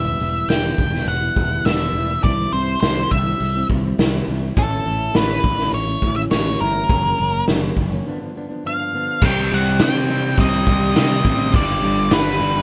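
Quiet-loud alternative rock at 103 BPM in 4/4, brooding and angsty, heard as a short cut from a longer piece played live in one room with light reverb. A dark, up-front octave-fuzz lead guitar carries the melody over fingerpicked arpeggios from a full-bodied jumbo steel-string acoustic with audible finger squeak, a growly, punchy picked bass, and a gritty, saturated garage drum kit with a punchy kick and rolled-off top. After a break from 8.1 to 9.2 seconds the acoustic drops out and two background riff guitars, one compressed fuzz and one heavy high-gain, come in as the chords shift from a progression ending on G7 to C minor and G.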